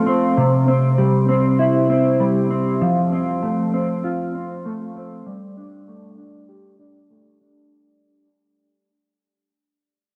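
A mellow, dark, clean fingered electric guitar plays alone and up front from 0.0 to 8.3 seconds in this floating, blissful dream pop excerpt at 98 BPM in 4/4, moving through C, F and Gsus2 between C3 and G4, its sound shaped by analog chorus, analog delay, a low-pass filter and cassette tape, with a filter sweep and a fade-out over the first 7.7 seconds, inside a lush, wet hall reverb on a home cassette recording that tops out at 10.3 kHz.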